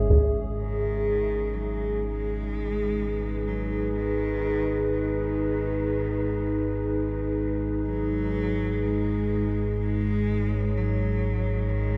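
A dark analog pad sits up front in this vast, ominous ambient excerpt, its detuned, chorused chords layered over a deep, rumbling drone that carries a filter sweep throughout. A barely audible, eerie FM synth bell warbles through arpeggios only until 1.3 seconds, while a very quiet bronze singing bowl rings with slow, metallic beating. From 0.6 seconds a close, warm solo cello fades in, bowed with expressive vibrato and portamento, and the whole piece hangs in a huge ambient reverb.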